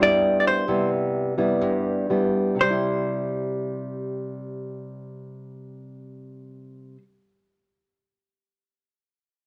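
A moderate small-room reverb frames this short, romantic and breezy bossa nova fragment in C major, moving in a straight 4/4 between 118 and 136 BPM and slowing down over its first 2.6 seconds as a Cmaj7 settles to a plain C chord. Up front, a dark, clean and compressed hollow-body electric jazz guitar carries the melody within a narrow span from C5 to D5, while a classical-style nylon-string acoustic guitar supplies thumb-plucked accompaniment from the low register, its finger squeaks audible. Both guitars play together from the start until about 7 seconds.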